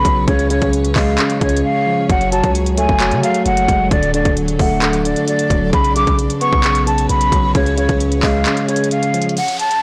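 Menacing and dark, this short cut from a longer trap hip hop piece moves at 132 BPM in a half-time feel. A breathy jazz flute carries the melody with vibrato, a soft attack and lifted highs, its expressive line muffled by a low-pass filter, while a worn, slightly out-of-tune tine electric piano sits up front beneath it, also filtered. Further back, a granular cloud pad blurs and evolves with a slow attack and long release, and a deep, sine-toned 808-style bass holds long notes with a fast attack that decays. The electronic trap kit brings a hard-clipped kick, crisp hi-hats and handclaps roughened with 12-bit sampler grit, dropping out briefly between 1.6 and 2.1 seconds, and the kick falls away from 8.5 seconds. Chords move from C# through F#madd9, D and Bsus2 back to C#, and a downlifter closes the moment at 9.4 seconds over a blown-out, overdriven mix that stays dry and close.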